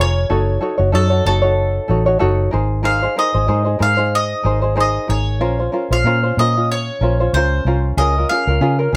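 Easy-going and heartfelt, this short acoustic pop excerpt moves at 94 BPM in 4/4 with a light swing on the sixteenths, cut from a longer piece. A bright, picked mandolin carries the melody, its double strings giving a round tone up front in the mix. Beneath it, a tenor ukulele fingerpicks a light, warm accompaniment, while a vintage electric bass, foam-muted and played with the fingers, supplies a dark, punchy, amped low end. All three parts play throughout the nine seconds, with the mandolin stopping just before the others at 8.9 s. The harmony moves from Gbm6 through Abadd9 and Bbmadd9 to land on Db6 at 8.0 s, set in a moderate studio reverb that keeps the small ensemble close and intimate.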